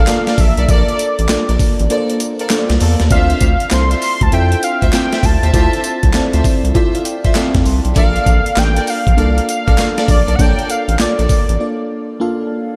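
New jack swing R&B at 99 BPM in 4/4, slick and bouncy, with a 64% swing on the sixteenths and a big arena sound washed in lush hall reverb, cut from a longer piece. A thick, detuned unison lead carries the melody with vibrato, riding over an FM electric piano layered with a soft pad that adds dreamy chords through chorus, phaser and slapback echo. A warm symphonic string section punctuates with bowed stabs, while a round, deep analog bass sits up front with a mellow, sustained tone. The gritty, compressed breakbeat kit pairs a thumpy kick and medium-tuned snare with hi-hat, tambourine and handclaps, and a very quiet, distant group handclap adds a hollow human touch. The kick drops out and the electric piano plays a fill from 1.9 to 3.1 s, the piano fills again from 6.1 to 8.0 s, and a break arrives at 11.6 s as the harmony moves from Bbmaj7 to Dm9 and back.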